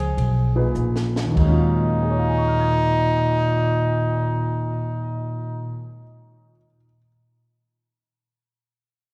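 Heard through a live club PA with lush hall reverb, this short fragment of searching, intense modal jazz in Eb minor at 94 BPM swings in 4/4 as the tempo slows and a compact cocktail kit with dark cymbals, a high-tuned snare and a punchy kick plays a fill before dropping out at 1.6 seconds, while a bright, forceful, close-miked trumpet carries the melody with slapback echo over a mellow, subtoned bass clarinet with light vibrato and scooped notes, a woody, thumpy pizzicato upright bass on gut strings, and a warm, open grand piano, also echoed, that enters at 0.6 seconds, moves from Ebsus4 to Ebm11 and rings on alone until 7.1 seconds.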